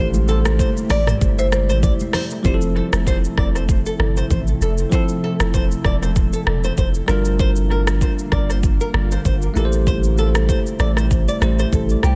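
A deep, punchy sub bass with a pitch-drop attack sits up front in this joyful, sunny afrobeats excerpt at 97 BPM in F major, alongside an electronic afro-pop kit with a deep kick, dark hats, rim clicks, shaker and toms, the kit soaked in dub echo. A bright, bell-like tine electric piano with phaser carries the accompaniment, joined by a fingerpicked flamenco guitar riff, while a cloudy, detuned granular pad drifts in the background over chords moving from Am7 to Fmaj7, Gm7 and back. In the opening moments, very quiet dry congas play until 2.3 seconds and a woody, close-miked marimba adds a brief background melody between 0.9 and 2.1 seconds, all within an echo-heavy mix with little reverb.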